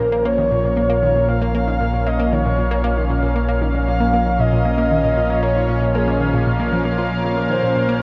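Drenched in an enormous reverb with an 8.5-second tail and colored by worn, warbling cassette tape with drifting pitch, this hypnotic, mysterious fragment of sequencer-driven ambient space music moves at 116 BPM in 4/4 on a single Bb minor chord, tuned to A4 = 445 Hz. A breathy, flute-like synth lead with vibrato carries the melody through lush chorus, shimmer reverb and tape echo, over a thick, detuned unison pad that holds sustained chords up front with its own chorus and shimmer reverb. An analog pluck with a round, nasal tone plays a riff through phaser, chorus, shimmer reverb and tape echo, while a deep sine sub bass anchors the low end on Bb1.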